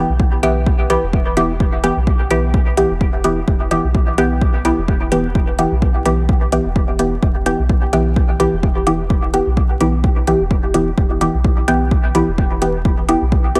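A punchy, overdriven electronic kick and metallic, overdriven hi-hat drive a 128 BPM 4/4 groove with a light 16th-note swing, both set in a small room ambience, in this cavernous, meditative dub techno excerpt held on E minor. Up front, a muted, sawtooth-based filtered chord stab with a short plucked decay carries chorus, phaser and dub echo. Beneath it, a deep, round, mellow sub bass with tube saturation and sidechain pumping sustains, while light reverb and vinyl crackle surround the mix.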